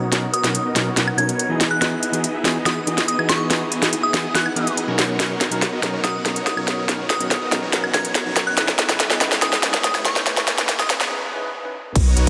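Opening together, detuned supersaw chords moving through a filter sweep and a bright tine electric piano with gritty sampler texture ride a half-time future bass build-up at 142 BPM in B major, joined by a crisp trap kit fill with sharp snare and woodblock, a crystalline, warbling synth bell melody in chorus and dub echo, and a background riser, before a break at 11.1 seconds gives way to a punchy kick and thick sub bass at 12.0 seconds, all in a lush hall reverb that feels euphoric.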